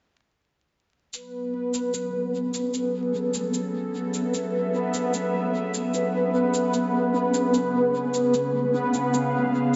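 Meditative and hazy, this ambient dub fragment, cut from a longer piece, moves at 75 BPM in a straight 4/4 in F# minor. A cabasa enters first at 1.1 s, electronic and tape-warm, as if re-recorded in a small room, and its dub echo trails behind it. The bubbling stepped-filter texture follows at 1.3 s, up front and resonant, its detuned sawtooth tone jumping through random filter steps with chorus and its own reverb. An airy, breathy pad arrives at 1.5 s to hold sustained chords, soft and warbling with a vintage, detuned character, a noise layer, slow attack and long release, and it fades in over the passage. The harmony rests on F#m7 before turning to C#7 at 7.5 s, all set in a moderate echo-chamber reverb with a haze of vinyl crackle and a dulled top end.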